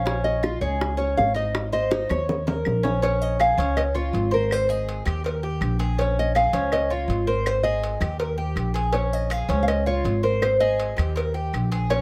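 A light reverb gives this short cut from a longer piece a gentle glow, with the upright bass and the Cuban tres sitting up front. It is sunny Cuban son in the guajira style, moving briskly at 162 BPM in a straight 4/4 in Ab major, circling through Bbm7, Db, Ab and Eb. A fingerpicked nylon-string guitar carries the melody in a small, warm voice, while the tres plays arpeggios on its metallic double strings, some octave-doubled, with a mellow edge. The pizzicato bass, dark and woody on steel strings, holds down the low end. Round, low-tuned bongos and cowbell played with soft hands come in at 0.1 s, close, dry claves sit in the background, and a drum fill from 1.9 s leads into the next section at 3.0 s.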